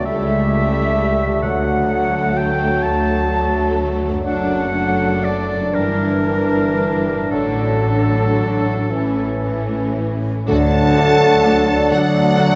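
Classical slow romantic movement for symphony orchestra in D major, tender and warm, at a rubato 37-44 BPM in 6/8, where a dark, distant violin section carries the melody over second lines from a clear oboe, hollow flute, dark clarinet and a second violin section, with warm bassoon and very quiet viola accompaniment, dark French horns holding sustained chords, ringing harp arpeggios, a rich cello section and woody double basses on the bass, soft round timpani from 1.4 to 2.8 seconds, and a tight, very quiet trombone section joining with sustained chords at 10.5 seconds, all in a scoring-stage reverb.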